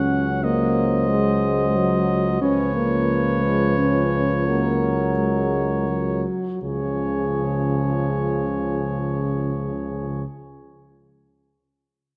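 In a straight 3/4 at 80-91 BPM that slows between 1.4 and 6.6 seconds, this stately, noble classical brass quintet fragment in Db major sets a clear cornet melody over a mellow flugelhorn second line, with a close-miked French horn adding vibrato accompaniment, a trombone sitting in the background, and a tuba holding the bass up front with light vibrato, all within a moderate scoring-stage reverb as the harmony settles onto Db at 6.6 seconds.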